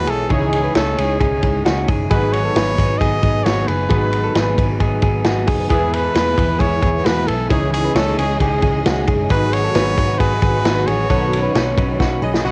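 Jangly indie pop in C# minor at 133 BPM, bittersweet and restless, where a clear, close-miked trumpet carries the melody over a bright direct-recorded guitar's arpeggios, a hollow-bodied semi-hollow guitar, detuned sawtooth keys with chorus, a round foam-muted picked bass and an up-front vintage drum kit with dark cymbals, while lush bowed strings join at 5.7 seconds and drums and keys fill at 12.0 seconds, everything but the bass colored by cassette tape in a homemade, lightly reverberant sound.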